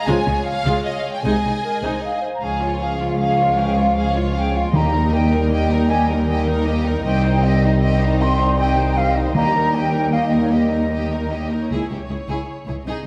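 An airy, distant flute soars over a lush, bowed string orchestra of violins, violas, cellos and double basses in this soaring, adventurous cinematic excerpt at 155 BPM in 3/4, with the violins carrying the expressive melody and a second line beneath it. Trombones hold sustained chords in the background, a very quiet, dark horn section sounds only from 0.1 to 1.4 s, and a mellow solo clarinet adds a brief line from 1.6 to 2.4 s. Close, dry timpani strike on Eb3 at 4.7 and 9.3 s, while a wet scoring-stage reverb surrounds the ensemble as the chords move from Db through Eb and Cm to a closing Dbm.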